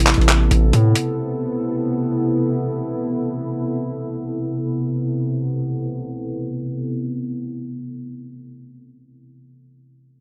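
A deep, moody ambient pad of detuned sawtooth voices over a sub octave sustains dark chords in A minor across the full 8 seconds, opening on Amadd9, its chorus and built-in reverb softened by a low-pass filter that sweeps through the first 4.7 seconds. This brooding, melancholic hip hop and trap fragment drifts in free time, opening with a saturated, aggressive 808-style bass that hits hard and decays by 0.9 seconds. A gritty, pitched-down sampler drum kit of compressed handclaps and hi-hat sits up front until 1.1 seconds, all within a dark, dry mix.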